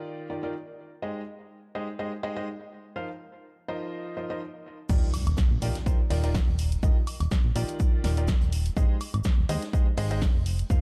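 A lightly swung 4/4 groove drops in at 4.9 seconds in this uplifting, joyful piano house piece, where a clear, woody upright piano riff with audible action noise, tape echo and sidechain pumping first plays alone over Ebmaj9, Abmaj7 and F7sus4 chords, before a round, dark, sidechained FM bass, an overdriven, up-front electronic kick, a punchy analog drum machine with snare, hi-hat, crash and woodblock, a background acoustic jazz kit with high-tuned snare, hi-hat and shaker, and a very quiet electronic impact from 5.0 to 6.8 seconds join in a small-room ambience with a dark production.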